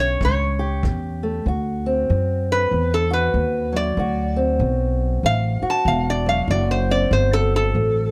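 A bright, nasal metal-body resonator slide guitar sits up front from the first moment over a boxy, fingerpicked ladder-braced acoustic guitar on old strings and a thumpy pizzicato upright bass, while a tight brushed kick drum sounds only from 0.2 to 1.0 seconds as the A7 chord moves to D7 at 1.5 seconds, where the resonator, played with fingerpicks and a steel bar, takes a metallic solo through the rest of this laid-back, swaggering, swung acoustic country blues fragment, all framed by moderate studio reverb and a dark production.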